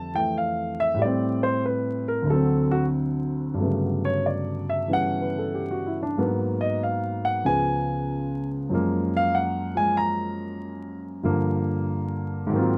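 Solo jazz piano in a warm, relaxed mood, cut from a longer piece and running 12.8 seconds. A lone grand piano carries everything, its tone natural and up front, spanning from low C#2 up to A#5. The swing feel is loose and rubato, moving through rich extended harmonies such as Gmaj9#11 and F#maj9 before landing on Gm7 at 11.2 seconds. Close, detailed microphones catch the instrument intimately, set in light reverb with a layer of vinyl crackle beneath.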